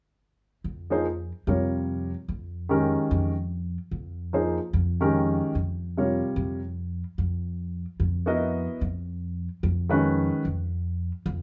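A wet studio reverb with a short half-second tail lends this brief cut from a longer piece a sense of being heard from further back in the room, even as both instruments sit up front. It is a spiritual, cool modal jazz passage in Bb dorian at 147 BPM in 4/4, with a swung eighth-note feel. The acoustic upright bass enters at 0.6 seconds, played pizzicato on steel strings with a woody tone, holding around a low F. At 0.9 seconds a warm, polished upright piano joins in a present accompanying role, its short-sustained voicings spanning the middle register over a Bbm11 harmony. At 6.8 seconds the harmony moves to a rootless Db9sus4; the piano drops out at 10.4 seconds, and the bass carries the mood through to the end of the fragment.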